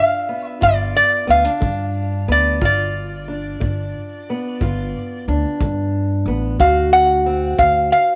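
Acoustic country blues excerpt in G mixolydian at a swaggering, soulful 60 BPM in 12/8, with an up-front, nasal, metallic resonator slide guitar carrying the melody through a cassette tape tint over a dark, boxy parlour acoustic guitar with old strings fingerpicking the accompaniment, joined at 0.6 seconds by a woody pizzicato upright bass and a tight, taped kick drum played with brushes, all in a small-room home recording with light reverb that moves from G7 to D7 at 6.6 seconds.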